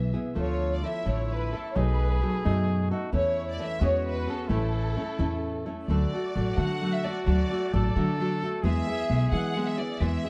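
A lush bowed violin section carries the melody with vibrato and a distant, tape-echoed sheen, over fingerpicked nylon-string guitar and woody pizzicato upright bass, both up front, in this festive, romantic mariachi excerpt in a rubato 6/8 at 87 BPM. A bright solo trumpet with light vibrato adds a classical-style second line from 0.4 s. The music moves from A major into D major at 5.9 s, all set in a small room with a dark production.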